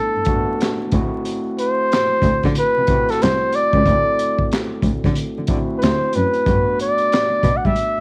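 A warm, up-front flugelhorn carries the melody in a relaxed, sensual neo-soul R&B groove, its jazz-style line shaded with light vibrato and scooped notes over Gmaj9 and D9 harmony. A barky, gritty electric piano played through a combo amp sits low behind it, while a dark, bowed cello enters at 0.2 seconds with expressive vibrato and portamento, alongside a crunchy breakbeat kit of punchy kick, high-tuned snare, hi-hat and handclaps with a rolled-off top. The piano and drums carry a cassette-tape coloring, and the whole excerpt has the feel of a home cassette recording with vinyl crackle and light reverb.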